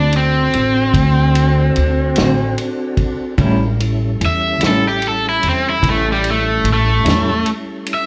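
Heard through a club PA with light room reverb, this swaggering, rollicking slow blues excerpt in 12/8 at 49 BPM is led by a bright, overdriven cranked stack guitar playing an up-front solo with plate reverb, slapback and tape echo, moving from D7 to A7 at 3.4 seconds. Beneath it, a smooth tonewheel organ holds sustained chords with key click, chorus vibrato and a slow rotary speaker, while a woody, dark pizzicato upright bass and a dry, mid-forward soul drum kit with a tight kick, medium-tuned snare and ride cymbal keep the groove. A clean, picked electric guitar with tremolo and slapback enters at 2.2 seconds to add accompaniment.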